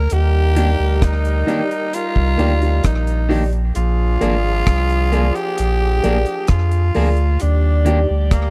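A growling tenor saxophone opens this sunny roots reggae passage at 66 BPM in Eb major, carrying the melody with a raspy, gritty edge, light vibrato and a touch of tape echo, while a round, sine-like sub bass with a fast attack sits deep and up front beneath it. At 0.1 seconds a dry, tight acoustic drum kit joins with hi-hat, kick drum and rim click, prominent in the mix, and a punchy horn section adds a second line with light vibrato and its own tape echo. From 0.6 to 8.0 seconds an electric guitar at the edge of break-up plays picked accompaniment through spring reverb and tape echo, and a dark, woody upright piano with a boxy, long-sustaining tone punctuates the groove with stabs. The straight 4/4 feel rests on a slow harmony that moves from Ebmaj7 to Bb7 and back to Ebmaj7. The sound is that of a close, dry 1970s-style studio with a light studio reverb, giving this short, sunny section cut from a longer piece an intimate, warm glow.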